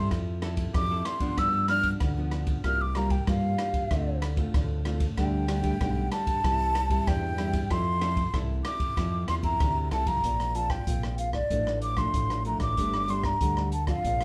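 A live band shares one room here, and its moderate reverb gives this short, sunny samba-and-choro cut an intimate, festive glow. Up front, a mellow, hollow concert flute carries the melody with an airy tone, gentle vibrato and soft attacks, taking a solo from the opening through 10.2 s over chords such as Fmaj7, G7 and Dm7. A deep, classical-sounding nylon-string guitar is fingerpicked underneath in a warm, low-lying accompaniment. A bright, direct fingered electric bass anchors the low end, while an acoustic jazz kit enters at 0.1 s with dark, smooth cymbals, a boomy kick, hi-hat, ride and rim clicks, its top rolled off. At 10.2 s the music moves into a new section on Bbsus2, Dm/A and Gsus2, keeping its straight, cheerful feel.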